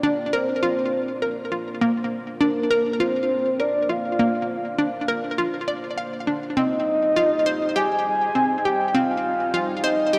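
A straight 4/4 pulse drives this expansive, mysterious stretch of sequencer-driven ambient space music, cut from a longer piece, as a hollow, bouncy square-wave pluck riffs up front with chorus and delay over a sweeping, resonant pad that fades in from the background and moves from Bbadd9 to Cm at 6.6 seconds. Above them, a soft, round octave-layered synth lead carries the melody with vibrato, tremolo, chorus, delay and a cassette-tape tint. The whole piece sits in a vast cathedral reverb that lets every note echo and linger.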